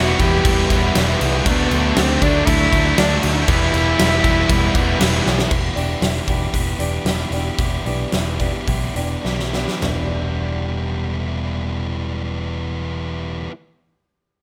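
A reedy, gut-string cello carries the melody over the opening of this dark, brooding passage of quiet-loud alternative rock, its bowed period-style line touched with tape echo until 5.2 seconds. Beneath it, a barely audible vintage organ-like string ensemble holds soft, chorused chords, while a pair of fuzz guitars and a tight, double-tracked distorted guitar churn out compressed riffs, one fuzz part sitting mellower in the background. A growly, amped electric bass with a punchy pick attack anchors the low end, and a huge arena drum kit sits up front with a fat snare, punchy kick and bright cymbals, rolling through fills as the music slows in its middle stretch. From 5.8 seconds a boxy parlour steel-string acoustic guitar enters with fingerpicked arpeggios, finger squeaks and its own tape echo, set back in the mix beneath one remaining fuzz guitar and the bass. The drums drop away at 10.0 seconds, leaving a sparser close to this fragment of a longer piece, all held in a light room reverb.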